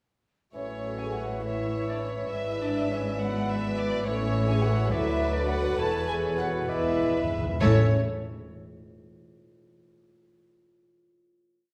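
Lively and graceful, this short classical-period movement for symphony orchestra moves in a lilting 6/8 and completes itself as a whole piece in under ten seconds. A chamber violin section carries the melody with light vibrato and a soft, sul tasto touch from 0.6 seconds. A second violin section weaves independent inner lines and sustained chords, while an airy, mellow flute doubles the tune at the octave from a distance. A clear oboe and a very quiet clarinet hold sustained chords. The bassoon, the gently bowed viola section and a dark, roomy French horn section fill out the middle. Underneath, a woody cello section plays a sustained bass with passing notes, doubled by a smooth-topped double bass section. Timpani with medium mallets roll in with a fill at 6.7 seconds, and the harmony settles onto a final chord at 7.6 seconds. Most of the strings sound intimate and close, yet the whole orchestra is heard from further back in a wet recital hall, which gives the cadence a generous, lingering glow.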